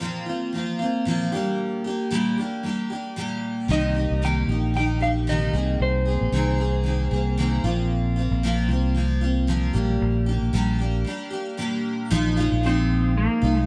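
Pop with a tender, reflective mood and a light swing, opening on a bright, full-bodied double-tracked steel-string acoustic guitar picking the accompaniment before a round, punchy fingered electric bass and a dark, slightly broken-up electric slide guitar carrying the melody enter at 3.7 seconds, with the slide returning at 12.7 seconds after a break as this cut from a longer piece closes in a studio ambience.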